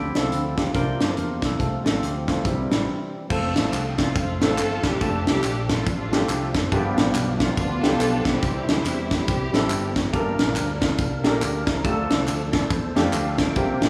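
Uplifting and jubilant, this uptempo gospel passage at 140 BPM in a swung 4/4 and F major opens with a fat, key-clicking tonewheel organ solo through a fast rotary speaker, set back behind a warm grand piano with slapback echo, a punchy, bright fingered electric bass and an up-front funk kit with a high-tuned snare, before tambourine and group handclaps join at 3.3 seconds, an expressive bowed string section with vibrato and portamento carries the melody from 4.0 to 10.0 seconds, and the organ adds a closing fill at 12.3 seconds, all inside a lush hall reverb with a big arena sound.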